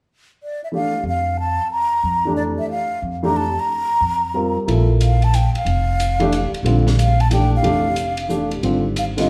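Open and spiritual in mood, this fragment of a longer modal jazz piece swings in 3/4 at 182 BPM, centred on B-flat Lydian. An airy, hollow concert flute with gentle vibrato and a soft attack carries the melody from 0.4 seconds, sitting up front alongside a dark, intimate upright piano whose action noise is audible and whose tuning is slightly detuned. Pizzicato upright bass on steel strings adds a woody, warm low end. At 4.7 seconds a compact cocktail kit enters softly, its smooth ride, hi-hat and high-tuned snare setting a new section in motion. The harmony rests on Bbmaj7 before shifting to Abmaj7 at 8.6 seconds, and a large studio reverb places the ensemble further back in the room.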